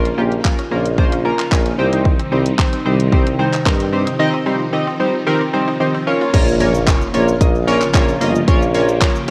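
Bittersweet yet confident, this dance-pop fragment, cut from a longer piece, moves in a straight 4/4 over Bbm and Cm chords. Glossy, detuned retro synth keys carry the accompaniment up front with pulse-wave and sawtooth tones, filter sweeps and a fill around 1.0 seconds, while a swirling, vintage string machine holds sustained chords in the background through ensemble chorus and phaser. A warm, roomy tuba with vibrato plays the bass, and a woody, mallet-like FM pluck spins bright arpeggios with chorus and tape echo until 6.3 seconds. A punchy, layered electronic pop kit of kick, hi-hat, shaker, handclaps and crash sits up front, and the keys, strings, tuba and pluck all pump with sidechain compression. At 6.3 seconds an electronic impact marks the next section, and a very quiet, hollow group handclap from a large room joins at 6.9 seconds, the whole mix carrying light reverb and the warbly pitch drift of worn cassette tape.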